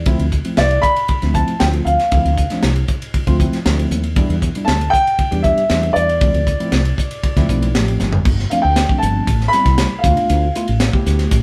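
Electric jazz fusion with a driving, slick feel, this short cut from a longer piece moves in a straight 4/4 and sounds like a band playing live together in one room with light reverb. A dark concert grand piano carries the melody up front from 0.6 s, its mellow, boxy tone ringing with long sustain high in its register. Underneath, a tine electric piano supplies clean accompaniment through its built-in speakers, sitting lower in the mix. A woody fretless electric bass, recorded direct and amped, gives a growly, round and punchy low end with a hollow-body character. The tight funk drum kit, acoustic and mid-forward in a small room, features a high-tuned snare and a snug kick, with a drum fill at 8.0 s leading into a new section where the harmony shifts from minor sevenths toward a suspended dominant and richer extended chords.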